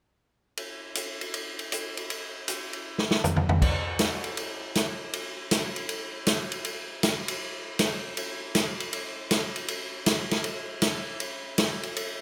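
A swinging big-band drum kit opens this jazz passage at 0.6 s, set up front in a natural studio room with light reverb, its crash, hi-hat, ride, toms, medium-tuned snare and punchy kick driving a brisk 158 BPM in 4/4 with swung eighth notes. A drum fill from 2.9 to 3.6 s leads into the next section, and the kit carries the brassy, joyful mood until it stops at 12.1 s in this fragment cut from a longer piece.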